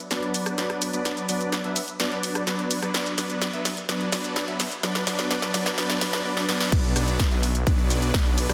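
A festival progressive house excerpt in B minor at 127 BPM opens at 0.1 s with a huge, lush supersaw chord riff, pumping under sidechain compression with a low-pass filter sweep and tape echo, over a punchy, layered big-room drum kit of crash, hi-hat, rim click, shaker and snare that plays drum fills through the emotional build-up. At 6.7 s the drop hits as an up-front electronic kick and a thick, menacing detuned saw bass on B join, the bass beating and pumping beneath the chords. A moderate digital room reverb surrounds the euphoric mix, and the master is dense and heavily limited.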